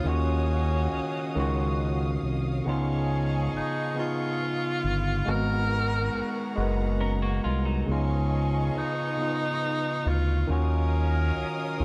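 Slow R&B in 6/8 at 46 BPM, counted in dotted quarters, this short, yearning and sultry passage is cut from a longer piece and moves through Ebm9, Db9, Abm9 and back. A mellow tenor saxophone carries the melody with jazz-style vibrato, sounding distant and roomy through a digital delay. Up front, an overdriven tine electric piano gives barky, gritty accompaniment through a combo amp, while a smooth gliding synth bass with portamento, entering at 0.1 seconds, sits forward and dark beneath it. Further back, a woody, bowed studio string section holds lush sustained chords, and a tight horn section adds warm pop-style stabs in the background. A clean, compressed electric guitar with a scooped tone and lush chorus slips in a brief picked second line from 7.0 to 8.1 seconds, all set in light reverb and studio ambience.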